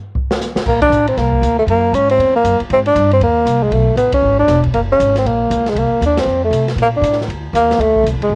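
Small-group swing and bop jazz in a sophisticated, relaxed mood, cut from a longer piece and heard as a home cassette recording with studio reverb, where a breathy, whispered tenor saxophone with vibrato, subtone, scooped notes and a cassette-tape tint carries an intimate, close-miked solo melody up front over a woody, thumpy pizzicato upright bass on gut strings and a small-room drum kit with dark cymbals and a boomy kick, the band hitting accents together at 0.8, 4.1 and 6.1 seconds.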